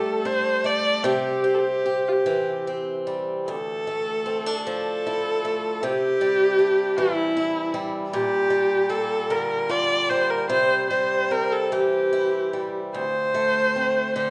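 A single bowed viola and a picked acoustic guitar begin together, both up front, in this mournful, haunting fragment of Celtic folk cut from a longer piece. The pace is slow and rubato, around 50 BPM counted in dotted quarters in 6/8. The viola carries the melody between E4 and D5 with a rich, focused tone and vibrato. Beneath it, the guitar plays swing-style accompaniment from D2 to G4, bright and a little boxy, with finger squeaks audible on the strings. A short opening passage moves from Gsus2 to C, and at 3.5 seconds the second section begins, drifting through Dmadd9, Cadd9 and Gm7/Bb before settling on a bare D7 at 12.9 seconds. A moderate scoring-stage reverb with a 1.4-second decay surrounds the duo and lends the slow melody a lingering, spacious air.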